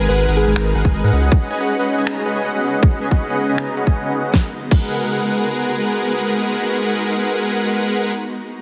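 A huge, detuned supersaw riff pumps under a filter sweep through the first 4.3 seconds of this bittersweet, emotional half-time future bass cut, over a shimmering, ethereal pad, a thick saturated sub bass, a round, tine-like thumb-piano-style pluck in the background, a hard-clipped overdriven kick and a layered pop kit with a fat snare, all set in a lush hall and squeezed into a heavily compressed radio sound.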